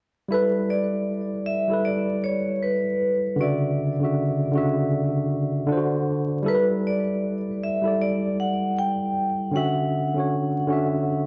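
This dreamy, cosy hip hop fragment is cut from a longer piece and moves at an unhurried pace in 4/4 with swung sixteenths. A tine electric piano sits up front as the accompaniment. It sounds worn, slightly out of tune and lightly overdriven, as if heard through its built-in speakers, with cassette tape colour and a low-pass filter taking the edge off its top. Above it, a vibraphone played with medium hard mallets carries the melody between B4 and G5, metallic and ringing with a slow motor vibrato, its bright tone also rounded by a low-pass filter. Both parts play from 0.3 to 11.3 seconds over a gentle progression of G69, Dmaj9 and D7, returning to G69 and Dmaj9. The mix is bathed in a wet spring reverb and the sound of warbling old tape, with vinyl crackle and pitch drift adding a hazy, nostalgic patina.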